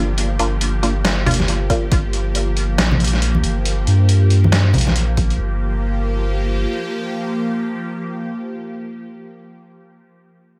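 Deep dubstep at 138 BPM in G minor, this meditative, brooding fragment from a longer piece moves with a swung, half-time feel over a single Gm7 chord. A tense, string-like bowed drone with detuned sawtooth unison, a noise layer and vibrato holds sustained chords through the whole passage to 9.6 seconds, washed in its own reverb and a phaser. A filtered dub chord stab, resonant and wave-folded with a short filter-pluck decay, sounds only in the opening seconds with phaser and dub echo. Up front, a thick, saturated sine sub bass carries the low end until 6.7 seconds under a filter sweep through the first section. A gritty, pitched-down sampler-style kit of compressed hi-hat and snare, tape-toned and re-recorded in a small room, plays from 0.2 to 5.4 seconds alongside soft-handed congas sitting close yet in the background, while a punchy, overdriven electronic kick lands in brief hits, and the mix sits in light reverb.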